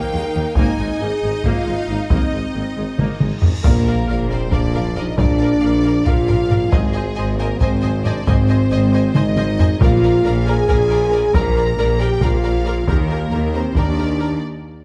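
Heavy-sticked taiko drums, with a vintage, band-limited sound, drive this heroic, majestic excerpt of an epic orchestral film score in 7/8 at 273 BPM in eighths, in Bb mixolydian. A warm French horn section holds sustained chords over bright, lush violins carrying the melody and a close second line, intense, clear violas, and a low end of rich background cellos, distant double basses and a tuba. A huge cymbal swell and sub drop arrives at 3.3 seconds, a very quiet, round timpani stroke sounds at 9.8 seconds, and the whole excerpt sits in a moderate scoring-stage reverb with a faint mains hum.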